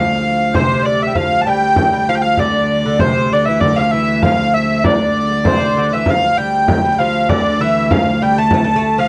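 A nasal, reedy hurdy-gurdy carries the melody up front in this driving, ancient-sounding medieval dance excerpt in D minor at 98 BPM, joined by a crisp, chiffy tenor recorder until 5.8 seconds, a delicate fingerpicked lute, a biting viola da gamba drone on D2 and a deep frame drum played with soft hands, all captured in a dry, close 1970s-style booth.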